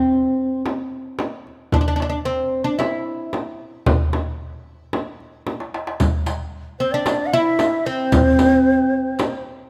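Arabic maqam ensemble music at 112 BPM in a straight 4/4, passionate and stately, cut from a longer piece: a woody, up-front fretless oud carries the melody from the start, with a crisp, deep metal-shell darbuka and a small, bright, close frame drum played with soft hands. A drum fill at 5.5 seconds leads into a new section, where a vintage riq with dark jingles enters at 6.0 seconds and a breathy low ney with vibrato adds an expressive second line from 6.8 seconds. The ensemble sits in a moderate recital-hall reverb, with the darbuka sounding compressed and saturated.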